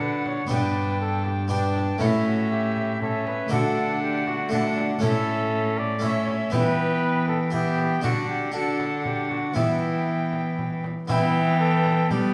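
Heard in a wet recital hall, this excerpt of a solemn, courtly renaissance-style consort dance in triple time features a mellow cornet on the melody, played with light vibrato and a soft attack, alongside an airy, woody alto recorder on the second line. A close-miked, dry, full Flemish-style harpsichord sits up front, plucked on two sets of strings, while a warm gut-string viola and a rich, reedy, bowed cello fill out the accompaniment and bass, joined by a small, saturated frame drum played with soft hands. All six parts sound together from start to finish, and a new section begins at 11.1 s.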